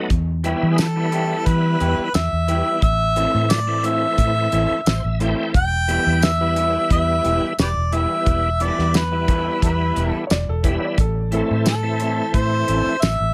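A mellow, roomy harmonica carries the melody with light vibrato, scooped notes and tongue slaps in this mournful, brooding straight-eighth soul blues excerpt in E minor at 88 BPM, backed by a bright, lightly overdriven tonewheel organ with key click, slow rotary speaker, chorus vibrato and a fill at 4.5 seconds, a dark, round foam-muted fingered bass, a cloth-damped thuddy drum kit with fat snare, tight kick, hi-hat and tambourine, slightly broken-up lo-fi electric guitar stabs with tape echo in the background, and a clear, woody upright piano second line with tape echo that appears at 10.3 seconds.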